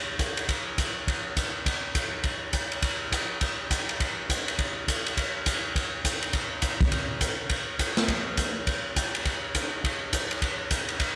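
Down-home and playful, this short country excerpt swings at 206 BPM in 4/4, carried entirely by a big-band drum kit that plays from 0.2 to 11.1 seconds. The kit sits up front with a polished, airy hall sound and light reverb, pairing dark ride and hi-hat cymbals with a medium-tuned snare and a punchy kick. A single section is stated and then repeats from 6.3 seconds, before the recording cuts off mid-piece.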